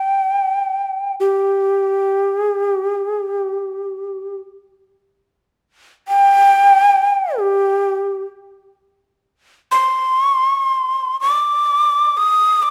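A breathy, close-miked solo shakuhachi opens this austere, calm excerpt of Japanese traditional chamber music, its end-blown bamboo tone sitting up front with vibrato and tongued notes as it moves in free time between G4 and Eb6 inside a moderate recital-hall reverb.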